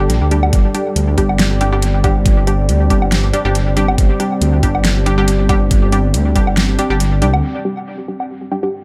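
Deep dubstep at 139 BPM in a half-time feel with a light 16th-note swing, this brief, dark and brooding fragment is cut from a longer piece and sits on a G5 chord throughout. A deep, rumbling detuned saw bass sits up front from the start, its unison voices beating against each other, while an overdriven, knocking electronic kick and a layered dubstep kit with a huge snare, low-passed hats and woodblock drive the drop. Above them, a muted, filtered dub chord stab plucks short chorused hits into dub echo, and a moody, full-bodied ambient pad holds sustained chords with a slow attack and long release. The kick drops out at 7.0 seconds, and from 7.4 seconds the bass stops while filter sweeps move across the drums and the pad to close the fragment. The echo-heavy mix carries only light reverb.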